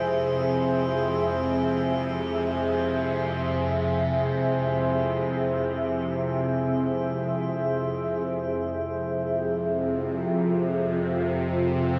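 Dark ambient drone in free time and F harmonic minor, tuned to A4 = 442 Hz, with an unsettling, cavernous mood: a deep, moody ambient pad holds sustained, chorused chords in the upper register while a tense, string-like bowed drone with phaser and vibrato sits bright and up front down low, and an eerie, metallic inharmonic drone floats quietly among them until it drops out at 8.3 seconds, when the harmony moves from Fmmaj7 to Fm, all bathed in a cathedral-sized reverb of this short excerpt cut from a longer piece.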